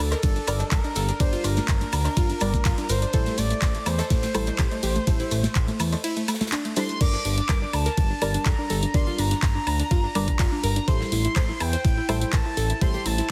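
Progressive house at 124 BPM in G dorian, dreamy and expansive, cut from a longer piece, where an overdriven, knocking electronic kick and a fat, detuned sawtooth bass with sidechain pumping sit up front under round analog pluck arpeggios, deep nasal chord stabs and a smooth portamento lead with vibrato, all moving between Gm and Am7, while a tape-warm house kit of claps, hats, ride and crash is joined by a very quiet airy acoustic kit, grainy maracas until about 7.0 s and hard-hand congas, woodblock and cowbell in the background until about 6.5 s, the whole mix carrying light reverb and a heavily compressed, radio-like sheen.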